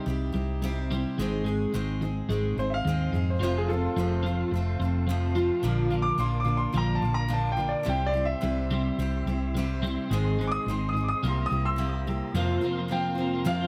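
A moderate large-studio reverb surrounds this warm, hopeful rock excerpt at 108 BPM, where a concert grand piano with deep bass and long sustain plays a solo melody through digital delay until 12.3 seconds over a bright, full-bodied picked steel-string acoustic guitar, a clean, twangy, chorused twelve-string electric guitar riff and a round, dark hollow-body bass up front, while a lightly overdriven tonewheel organ on a slow rotary speaker enters in the background at 3.4 seconds with sustained chords.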